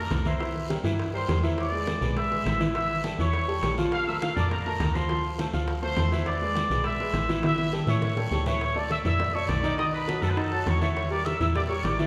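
A bright, punchy trumpet section carries the melody up front in this fiery, danceable salsa excerpt, its tight pop-style playing marked by a light vibrato and a vintage edge. Beside it, a clear, polished baby grand piano supplies the accompaniment, present and forward in the mix, while a woody FM bass with a round, dark tone, a fast attack and a decaying sound anchors the low end. Behind them, thick-skinned, low-tuned congas and tight, high-tuned bongos, both played with soft hands and carrying a band-limited vintage colour, sit back in the background, joined by a raspy, saturated guiro. A drum fill from 7.4 to 8.6 seconds leads into a new section where the harmony moves through Dmadd9, B7 and Em7b5 after earlier changes such as C7, Bbmaj7 and Dm9. The whole performance is bathed in a wet scoring-stage reverb that gives it the spacious sound of a church or concert hall.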